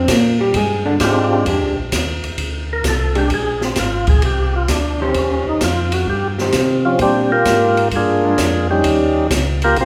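A percussive tonewheel organ with key click and slow rotary speaker carries the up-front lead in this greasy, bluesy soul jazz organ trio excerpt at 130 BPM in a swung 4/4, taking its solo from 1.5 s after a dark, clean hollow-body electric guitar opens with a brief solo and then comps until 8.8 s, while a second, mellow tonewheel organ with light overdrive, chorus vibrato and slow rotary supplies a round bass line, and a natural acoustic drum kit with dark cymbals and a boomy kick sits up front, the whole trio bathed in a recital hall's lush reverb over Bb13 and Eb13 chords.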